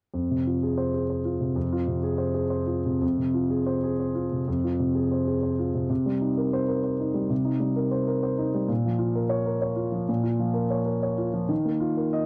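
Wistful and intimate, this short neoclassical minimalist piano passage, cut from a longer piece, unfolds in a flexible, rubato triple metre. A lone dark grand piano carries everything from 0.1 to 12.3 seconds, its mellow, smooth tone sitting up front with long sustain and a vintage character. The harmony moves gently from F minor through C minor seventh and B-flat minor before coming to rest on an open E-flat suspended chord at 11.5 seconds. An opening idea gives way to a second, longer passage at 3.0 seconds, keeping the reflective mood throughout. The sound is dry and close, capturing the feel of a 1970s-style studio room.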